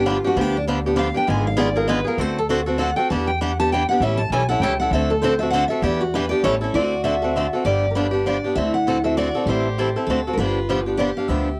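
Charming and lively, this clip of acoustic string swing in the jazz manouche style moves at a brisk 198 BPM in a swung 3/4, set in D mixolydian over a harmony built on seventh chords. A bright, fresh-strung picked steel-string guitar with a dreadnought body carries the solo melody from the start, while a boxy, up-front swing guitar picks the accompaniment and a woody, growly pizzicato upright bass anchors the low end. At 6.7 s a second picked steel-string guitar enters with a softer, warm line marked by finger squeak, with all three guitars carrying a cassette-tape character in a modest booth ambience that gives the whole a homespun feel.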